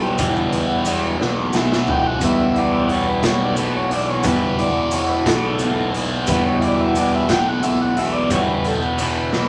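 A gritty, saturated garage sound in a bright stone room colors this dark, trippy psychedelic rock excerpt, a slow 6/8 sway at 59 BPM in E dorian resting on an E minor chord. A reedy vintage combo organ takes the solo across the full 9.5 seconds while a double-tracked fuzz guitar pushes an up-front riff through distortion and phaser, and an overdriven, round fuzz bass holds the low end. The raw, punchy drum kit enters at 0.2 seconds with a fill from 1.2 to 2.2 seconds, and grainy maracas sit in the background.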